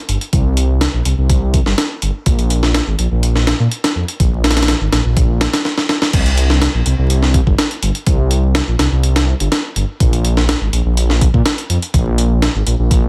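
A dense, heavily limited modern master with vinyl crackle and a digital ambience frames this energetic, funky breakbeat cut at 124 BPM in a straight 4/4. Up front, a gritty, pitched-up sampler-style drum kit with a thumpy kick, high-tuned snare, hi-hat and crash sits in a small room, while a deep, rumbling detuned saw bass beats dark and sustained alongside it, equally forward in the mix. A drum fill and stop at 5.7 seconds lead into the drop at 6.1 seconds, which runs until the fragment ends.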